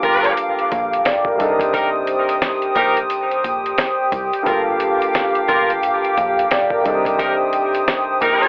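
Distant, roomy jazz-style horn stabs, touched with analog delay, punctuate this dark, gritty boom-bap hip-hop excerpt, set over a mellow baby grand piano with a cassette-tape tint and a hollow, flute-like pad whose chorus-soaked chords sustain across Gm7 and Cm7. Underneath, a round, foam-muted dub bass sits low beside a muffled, pitched-down sampler-style drum kit with a thumpy kick, fat snare and hi-hat in a swung feel, while a grainy tube shaker is very quiet in the background. The whole mix has a dry, hardware-driven grit, with vinyl crackle, a telephone-like filtering and light reverb.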